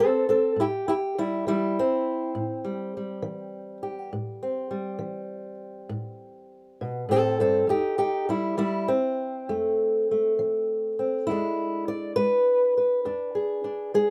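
A wet booth ambience surrounds this soulful, smoky excerpt of acoustic country blues in A minor, a 12/8 at 67 BPM, where a lone fingerpicked ladder-braced guitar with old strings sits up front, its dark, boxy, woody voice moving from a rootless Dm7 into Am7, then to F7 at 7.7 seconds and E7 at 11.3 seconds.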